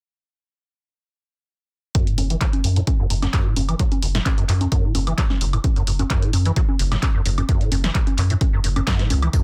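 At 1.9 seconds, a squelchy, hollow square-wave acid bass riff arrives together with a punchy electronic kick and an analog drum machine playing congas, handclaps, hi-hat, snare and woodblock, setting up a gritty, hypnotic acid house groove in straight 4/4. A filter sweep runs across the resonant acid line throughout, which is coloured by tube saturation, ensemble chorus, tape echo and sidechain pumping. Moments later, a round, deep bass settles underneath, blending square and sine tones with wave-folding and also pumping with the sidechain. The kick sits up front, while the drum machine's snare, clap and hats carry a short room sound, and both were re-recorded in a small room. At 9.3 seconds, a compressed, sampler-style tambourine flickers in the background through a high-pass filter. The mix is dry, dense and heavily limited in a modern style.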